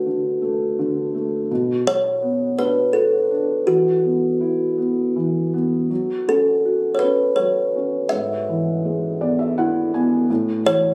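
In a rubato 3/4 at about 83 BPM, this short cut from a children's lullaby feels sleepy and gentle, with a felt-muted upright piano laying down soft, mellow, boxy accompaniment, its action noise audible up close. At 1.9 seconds a kalimba enters with the melody, its thumbnail plucks woody, hollow and ringing yet dark and smooth, sitting up front beside the piano, which adds a fill from 8.8 to 10.3 seconds. The intimate phone-in-the-room sound carries a light club reverb and compression.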